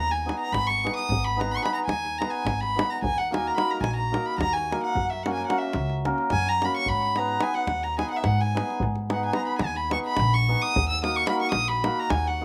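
A bowed solo violin sits up front across the whole 12.4 seconds, its sul tasto tone pure and floating yet somehow distant, carrying a fiery, bittersweet Balkan wedding-band feel in G# minor. It moves in a straight 7/8 at 217 BPM over chords from G#m through D#m and F#. Beneath it, a woody, thumpy pizzicato upright bass and a deep davul join a shimmering, ringing hammered dulcimer with slapback echo, all caught dry outdoors in this fragment of a longer piece.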